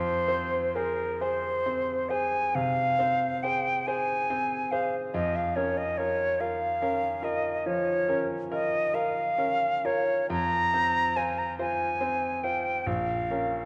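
A dark, warm production places this melancholic, solemn romantic chamber fragment in a concert hall with a moderate reverb tail, taken from a longer piece and running about 13.7 seconds. The airy concert flute sits close and up front, carrying the expressive melody with vibrato and soft attacks, while the grand piano accompanies throughout with a brilliant, open tone and short sustain. The duo moves in 12/8 with free rubato over a slow harmonic path that begins on F minor, shifts to B-flat minor over F at 5.1 seconds, and returns home at 10.3 seconds.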